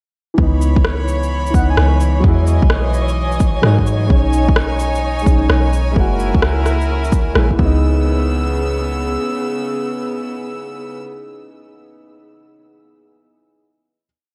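Lightly reverberant, this rainy and melancholic future garage piece in C# dorian at 129 BPM sets a deep, muffled, overdriven two-step kick and a skittering shuffled shaker and rim click, both re-recorded in a large room, under soft, round 808-style bass with long gliding notes, a dark, woody upright piano pushing rootless held chords through analog delay, a rich chamber string section sustaining an earthy pad with light vibrato, all three pumping with sidechain, plus a grainy, flickering high note in the background and a breathy, flute-like synth lead warbling in brief phrases around 1.5 seconds, before the groove gives way at 7.8 seconds to a final hit carried by the strings until 11.0 seconds and the piano until 14.1 seconds.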